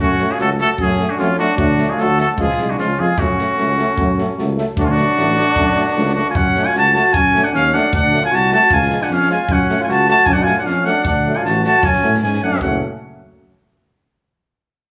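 A muted, nasal cornet carries the fiery, virtuosic melody up front in this 152 BPM Balkan brass band excerpt in swung 2/4, over a vibrato-tinged flugelhorn second line, a vintage-sounding French horn in the background, a very quiet, clear euphonium, and a distant, roomy tuba bass, with a dry cocktail drum kit's high-tuned snare and punchy kick entering at 0.2 seconds, as the band moves through F#m, D and C# chords in the moderate reverb of a large studio room.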